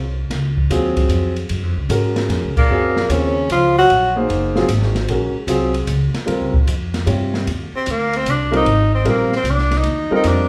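Modal jazz in a spiritual, hypnotic swung 3/4 at 151 BPM, with woody pizzicato upright bass and an intimate concert grand piano with audible action noise laying out Gbmaj9 harmony, dark-cymbaled drums sitting beneath, and two clear, vibrato-laden tenor saxophones stating a brief line together after a band accent at 2.5 seconds before one returns at 7.8 seconds for a scooped, distant-sounding solo as the mode lifts to Ab lydian, all set in a roomy live studio reverb.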